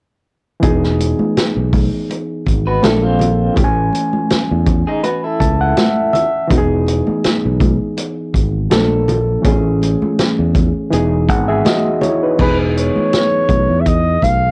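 A lush, smooth 1970s-style soul groove opens with a gritty, barky overdriven reed electric piano, a growly fingered electric bass, a vintage drum kit with a punchy kick and dark cymbals, and high-tuned congas ringing in the background, all with a light reverb and the soft haze of a home cassette recording. From 2.7 to 6.3 seconds a slightly broken-up electric guitar through a small old amp plays a picked, tremolo-tinged riff, while the electric piano adds a fill around 5.0 seconds over the gentle sway of major-seventh chords. At 12.4 seconds a distant, roomy flugelhorn takes the melody with scooped notes, carrying this cut from a longer piece to its close.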